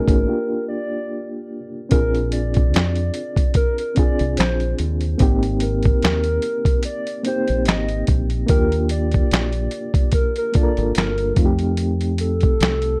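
Lo-fi hip hop at 73 BPM in 4/4 with a lazy 16th-note swing, this dreamy, cosy excerpt is cut from a longer piece. A warbling, nostalgic lead carries the melody from the first moment, its detuned square, sawtooth and triangle tones given a wave-folded edge, fast attack and sustained notes, softened by chorus, vibrato, a low-pass filter and plate reverb. Beneath it, a reedy, mellow electric piano plays the accompaniment with a medium tremolo through its built-in speakers, also filtered and bathed in plate reverb. A deep, round fingered electric bass sits up front, paired with a gritty, tape-warm sampler-style kit of thumpy kick, fat snare, hi-hat and handclaps, both entering at 0.1 seconds. After a brief break, the harmony settles into Bb9 at 1.9 seconds and drifts through Abmaj9 and Ebmaj9 before landing on F7 at 11.4 seconds, all within a dark, lightly reverberant production.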